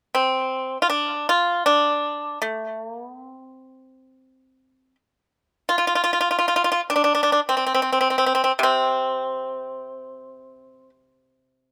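Pastoral and elegant, this brief cut from a longer Chinese traditional piece features a solo pipa in free time, its bright, percussive fingerpicked tone sitting dry and up front in an open-air recording with a touch of slapback echo, ranging from C3 to F4 across about 11.7 seconds.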